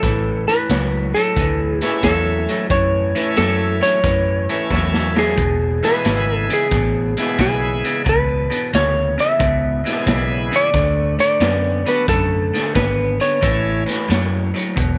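Rollicking and soulful, this electric blues shuffle in A major swings along at 90 BPM, cut from a longer piece, with a dark, clean lap steel guitar playing the slide melody over a slightly broken-up riff from an electric guitar through a small old amp with spring reverb. A round, foam-muted fingered bass and a gritty, boomy garage drum kit with a rolled-off top drive the groove, and the drums play a fill at 4.7 s as the chords move from A to E and on to D. A bright tonewheel organ with key click, overdrive and a slow rotary speaker shouts its accompaniment from 1.8 s to 13.8 s, all set in a small room with light reverb.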